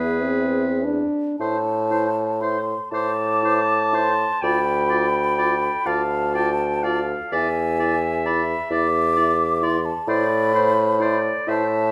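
Melancholic and elegiac, this slow romantic movement for wind quintet unfolds in a lilting 6/8 with a freely breathing rubato feel, cut from a longer piece. A concert flute carries the melody, airy and hollow with vibrato and tongued notes, while a warm, distant oboe sings a second line beneath it. Clarinet and French horn fill in the accompaniment, the clarinet mellow and roomy, the horn mellow and set in the background. Up front, a bassoon anchors the bass with a light vibrato, giving the ensemble a grounded core. The harmony moves from E into A minor at 1.4 seconds, through D minor and E7 before settling back on A minor at 10.1 seconds, all within a moderate recital hall reverb that lends the blend a gentle glow.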